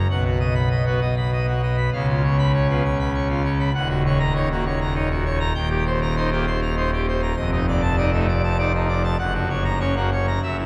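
A full pipe organ sounds from the very first moment, playing alone with mixtures drawn and a brilliant, romantic voicing that sits up front in the sound. This short classical organ toccata moves at 99 BPM in 3/4 with a straight feel, and its mood is majestic and jubilant. The organ spans a deep Eb1 up to B5 at the top, filling the whole register with a stately, ceremonial weight. The harmony travels through a chain of rich chords, from B through C#7, D#m7, Cm7/Eb and F6 before arriving on Gb near 9.2 seconds. A long, wet cathedral reverb of 5.6 seconds blooms around every chord in a church or concert hall setting, and the roughly 10.7-second passage is cut from a longer piece.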